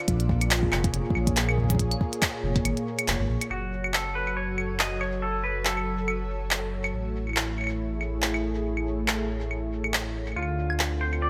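Eerie and cerebral, this IDM excerpt moves at 140 BPM in 4/4 with a light swing on the sixteenths, cut from a longer piece. A smooth, detuned sawtooth pad sits up front holding sustained chords from A#m7 through F#m, Amaj7 and Dm7, its soft attack and long release coloured by chorus, gritty vintage 12-bit sampler texture and shimmer reverb. Beneath it, a deep, rumbling detuned saw bass with a saturated, beating unison tone anchors the low end. A soft electronic kick plays only until about 2.6 seconds, while a glitchy kit of claves, handclaps and clicky hi-hats runs up front throughout, both re-recorded in a small room. From 3.5 seconds a bright, twangy clean electric guitar picks out a melody between F4 and D#5, treated with digital delay and shimmer reverb, returning briefly at 10.4 seconds. The whole sits in a moderate plate reverb with a bright, 1980s-style digital sheen.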